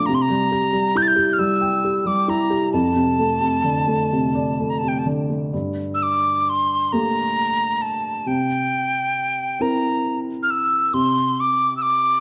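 A metal mid whistle carries the melody up front with an airy tone, vibrato and a soft, expressive attack, in this haunting, longing Celtic slow air at 45 BPM in a rubato 6/8. A felt-muted upright piano, mellow and intimate with a thick-felt hush, accompanies throughout the 12.2-second excerpt, moving through C, F6, Gmadd9 and C7 before a final unharmonized moment at 10.9 seconds. Both sit in a wet recital-hall reverb, and a second section opens at 5.5 seconds.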